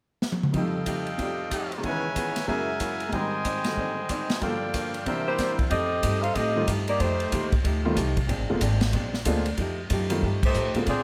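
A drum fill at 0.2 s opens this energetic, joyful big band swing at 186 BPM in F mixolydian. A bright, loose trumpet section then fires soft-attack stabs over an intimate upright piano with audible action noise and a clean, compressed hollow-body archtop guitar, while the airy, polished kit adds dark cymbals and a punchy kick. At 5.3 s a smooth saxophone section with vibrato carries the melody up front, and from 5.7 s a woody, growly pizzicato upright bass takes over the low end, all in light reverb, until a band accent hits at 10.4 s.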